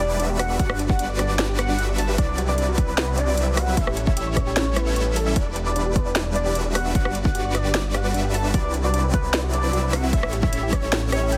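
Future bass in E minor at 151 BPM with a half-time feel, this emotional, dreamy excerpt is cut from a longer piece and runs about 11 seconds. A velvety synth lead carries the melody between A4 and A5, its smooth, dark tone shaded with chorus, tremolo and digital delay. Huge, bright supersaw chords treated with phaser play the riff through a progression of Em7, Cmaj9#11 and A7, while a soft, round pluck sits in the background with gentle arpeggios, and a thick, detuned saw bass with chorus and saturation sits up front. A trap kit with a sharp snare, bright hats and rim clicks is overdriven, and a hard-clipped electronic kick enters at 0.6 seconds, drops out between 5.0 and 5.4 seconds, and stops at 10.8 seconds. Every melodic part pumps with sidechain compression, and the dry mix carries a loud, heavily compressed radio sound.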